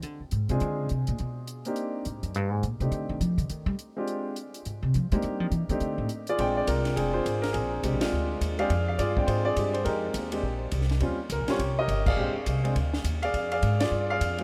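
A pizzicato upright bass with a woody, steel-strung tone opens this relaxed jazz piano trio excerpt, taking a solo through 6.4 seconds over a compact cocktail kit with dark cymbals, a high-tuned snare and a punchy kick sitting dry and low in the mix. A natural, up-front upright piano carries the melody from 0.5 seconds over swung eighths and rich extended chords, and the trio hits shared accents at 8.0, 12.0 and 13.8 seconds. A moderate cathedral reverb places the band in a vast, echoing space, giving the relaxed groove a spacious glow.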